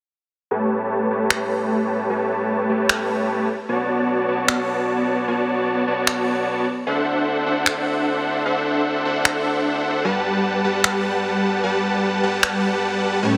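A huge, detuned supersaw chord riff opens this lush, bittersweet future bass excerpt at 0.5 s, its bright sawtooth voices stacked over a sub octave and run through a low-pass filter sweep and digital delay. Electronic finger snaps arrive at 1.3 s, sitting up front with a tape-warm, produced character over a half-time feel at 151 BPM in 4/4. The harmony moves through A7, Bm7, D7 and Gmaj7, with the supersaw sustaining each chord from a fast attack. Just before the cut, an airy, breathy pad with a soft noise layer and chorus slips in at 13.2 s on slow-attack sustained chords. A large ambient reverb with a long tail gives the whole passage a spacious, floating atmosphere.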